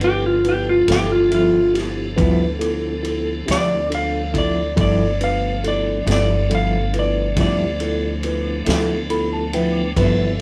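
A rough rehearsal-room recording with moderate reverb captures a rollicking, laid-back slow blues in 12/8, cut from a longer piece and resting on a G13 chord. A dark, clean lap steel guitar sits up front and plays a slide solo throughout, over a mellow tine electric piano, a piping tonewheel organ with slow rotary speaker, light overdrive and chorus vibrato, a woody, growly upright bass, and a vintage drum kit with a punchy kick and a rolled-off top. A warm semi-hollow electric guitar with tremolo joins at 0.9 s, and the electric piano adds a fill at 8.7 s.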